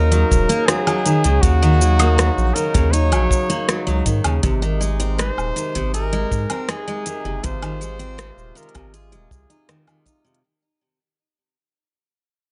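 Autumnal and wistful, this folktronica passage moves at an unhurried 80 BPM in straight 4/4, tuned a little below standard pitch and cut from a longer piece. A clear flugelhorn carries the melody with light vibrato and scooped notes, its pop-style solo line trailed by delay and plate reverb, while a reedy, nasal, breathing hand-pumped harmonium sustains chords in a boxy small-room sound. A bright, full-bodied jumbo steel-string acoustic guitar picks arpeggios through delay, finger squeaks audible, above a deep, round, sine-like sub bass that sits up front and warm. The organic electronic kit brings crisp hi-hat, rim click, shaker and woodblock re-recorded in a large room, paired with a tight, natural acoustic kick played with brushes. The harmony shifts from Ebm7 to Ab at 4.4 seconds, and a fade-out begins at 2.4 seconds, all within a lightly reverberant mix with a softened top end.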